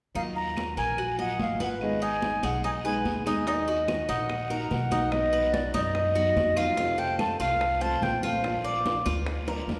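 Latin Cuban son in the guajira vein, nostalgic in mood, this excerpt places a pure, straight-toned concert flute with a crisp attack up front over a dark, fingerpicked nylon-string guitar with audible finger squeak and bright, metallic picked arpeggios from the double-strung Cuban tres. A thumpy, gut-strung pizzicato upright bass carries the low end, while ringing, high-tuned congas and a raspy guiro sit in the background, faint woody claves tick along, and very quiet, round, low-tuned bongos join at 3.5 s ahead of a drum fill at 9.5 s. A long, wet church reverb gives the recording the resonance of a large hall.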